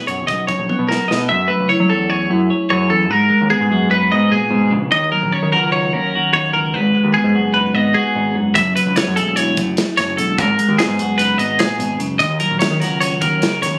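Math rock with a midwest emo lean, this playful, intricate excerpt moves at 297 BPM in eighths through a 9/8 metre, with a bright, twangy twelve-string electric guitar up front spinning arpeggios with slapback echo over a clean, compressed electric guitar accompaniment and a growling, overdriven picked bass. Chords shift from Bmaj9 through F#m9, G#m7 and D#m7. The acoustic studio drum kit, tight in the kick and rolled off on top, plays a fill from 0.7 to 1.3 seconds, drops out, and returns at 8.6 seconds, all heard through light reverb with a phone-in-the-room ambience.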